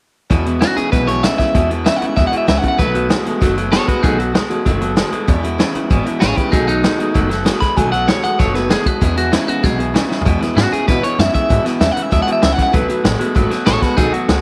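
A straight, driving four-beat groove from a vintage drum kit, with a punchy kick and rolled-off top sitting up front, pushes this rowdy, retro rockabilly excerpt, backed by the thumpy pizzicato of a woody, gut-strung upright bass. A lo-fi, twangy riff guitar through a small old amp and a full-bodied picked dreadnought acoustic in the background fill out the changes between E and B7. From 0.6 s a bright, scooped lead guitar at the edge of break-up carries the melody through tape echo, and a drum fill at 10.1 s ushers in a second pass of the same section in a small, lightly reverberant room.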